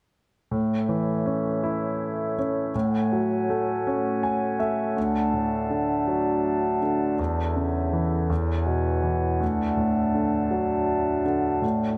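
At 0.5 s a concert grand piano and a glass harmonica enter together, opening a tender, swaying pop passage in 6/8 at a slow 54 BPM counted in dotted quarters. The piano carries the accompaniment up front, its tone warm and intimate, with deep bass, long sustain, a polished finish and the soft mechanical noise of its action clearly audible. Above it, the glass harmonica holds sustained chords that bloom in slowly, glassy, pure and ethereal in character. The harmony passes from A through F#madd9/A, Dadd9, A/E and E6 and settles back on Dadd9, and around 3.9 s the piano adds a brief fill leading into the move to Dadd9. Light reverb gives the pair a gentle sense of space, and the section runs until 12.0 s as a fragment cut from a longer piece.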